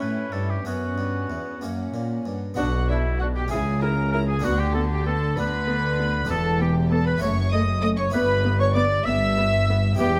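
Set in a moderate recital-hall reverb, this stormy, driving baroque-style concerto movement in B minor moves at 65 BPM in 6/8, with a clear, vintage-toned oboe carrying the melody over a lush, warm violin section high above, a dark, woody second violin line, a brilliant Italian-style harpsichord, a focused viola section in the background, and a smooth, even cello bass joined at 2.6 s by an up-front double bass section as the music turns from Em through F# toward Bm.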